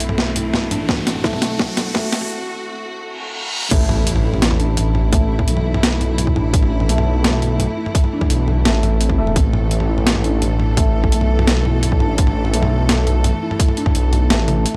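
Half-time drum and bass at 170 BPM in A dorian, dark and spacious, resting on A minor, with a build-up that carries a drum fill, a riser, a filter sweep and a brief break before the drop lands at 3.7 seconds with an electronic impact in the background. A deep, rumbling detuned saw bass and a hard-clipped, tape-warm electronic kick sit up front beside a gritty, overdriven boom bap sampler-style kit with a high-tuned snare, pitched down and re-recorded in a large room. Beneath them a lush, bowed string section holds sustained chords with sidechain pumping, and a felt-muted upright piano plays soft, intimate arpeggios through 12-bit sampler grit, a low-pass filter and tape echo, its action noise audible, all in a dry, gritty hardware sound.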